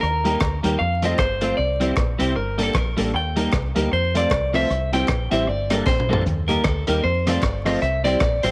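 Vinyl crackle and a lightly reverberant small room frame this energetic, mischievous ska excerpt with a swung feel, where a compressed, picked clean electric guitar solo rides over deep, round fingered dub bass; a saturated, gritty breakbeat kit with a high-tuned snare, tape echo and a fill at 5.9 s; an up-front second clean guitar comping through ensemble chorus and tape echo; woody stabs from a dark vintage upright piano; and very quiet hollow group handclaps, over a repeating Eb, F, C, Gmadd9 progression.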